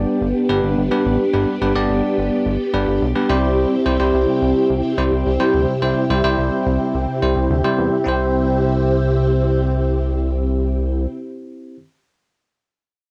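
Nostalgic and upbeat, this short synth-pop excerpt moves at 107 BPM in a straight 4/4 in C major, its harmony shifting from G to C at 3.3 seconds. A bright, bell-like tine electric piano supplies clean, direct accompaniment over mellow, organ-like ensemble strings that hold sustained chords through phaser and ensemble chorus. Beneath them a glossy, nasal chorused synth bass with a plucky filter sits up front, all captured in a wet studio ambience as a home recording on cassette.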